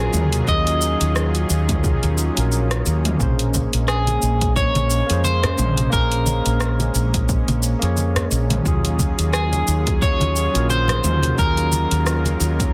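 Sunset chillout with a relaxed, smooth swing, where a dark, slightly broken-up electric guitar carries the melody up front with delay over a barky, gritty overdriven tine electric piano, a lush, detuned sawtooth unison pad with chorus, and a round, hollow-body fretless bass, while a deep house kit of dark hats, rim click, shaker and toms joins at 0.1 seconds, a punchy layered electronic kick at 0.5 seconds, and bright, dry congas and bongos in the background at 3.5 seconds, all under light reverb and a dense, heavily limited master in this excerpt from a longer piece.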